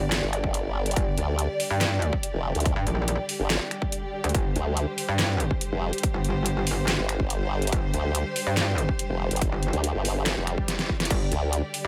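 The recording sits in a digital ambience, with two overdriven wobble basses and a layered drum kit pushed up front in this aggressive, chaotic cut from a longer heavy wobble dubstep track. At 142 BPM in 4/4 with a half-time feel, a metallic wobble bass with a saturated FM edge and chorus runs the whole way, joined by a second formant-sweep wobble bass built on detuned sawtooth tones that is also compressed and thickened with chorus. An overdriven electronic kick drives underneath, while the dubstep kit layers a deep snare with hi-hat, handclaps, finger snaps and crash cymbal, both re-recorded in a small room. Behind the din, a studio string section holds bowed, sul tasto chords with gentle vibrato and a smooth top, its sound pumping against the sidechain. Electronic zaps sit in the background near the start, and a swell from 10.5 seconds leads into a drum fill just before the close.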